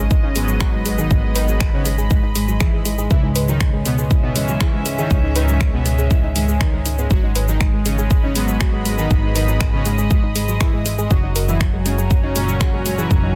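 A steady, straight pulse drives this melancholic melodic techno excerpt: a deep, up-front electronic kick sits beneath a deep house kit of finger snaps, dark hi-hats and shaker, its snare gently soft-clipped and its hats and percussion pumping against the kick. A punchy, funky analog bass with a fast, decaying filter pluck anchors the low end, and a faint sub drop rumbles under an impact in the opening 1.1 seconds. On top, a smooth, full-bodied detuned supersaw carries the melody with tape echo and sidechain pumping, while a soft, round, nasal pluck spins chorused arpeggios in the background and a glassy, crystalline wavetable pluck traces a very quiet second line. From 0.4 seconds, bold, fat, warbling synth brass stabs with vibrato and a sweeping filter join, and a warm, floating string section bowed sul tasto hovers above as texture. The harmony cycles through G#m7, C#m and F#, and the dry, dense, heavily limited mix keeps the mood driving yet wistful.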